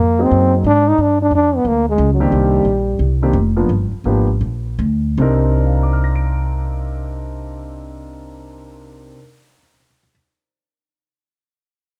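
Swinging and smoky, this short excerpt from a longer jazz piece sits in small-group swing and bop territory, moving at 152-179 BPM in 4/4 with a swung eighth-note feel in C minor. A mellow trombone carries the solo melody up front with light vibrato and scooped notes, playing only until 3.2 seconds. Beneath it, a woody, thumpy pizzicato upright bass with steel strings holds down the low end until 9.1 seconds, while a baby grand piano with long sustain provides accompaniment from 0.2 to 10.1 seconds. The tempo slows between 2.3 and 5.2 seconds as the harmony moves through Ab7, G7, Cm7 and G7#9, landing on Cm7 as a new section begins. The sound is dry and close, with a 1970s studio character and a touch of studio reverb.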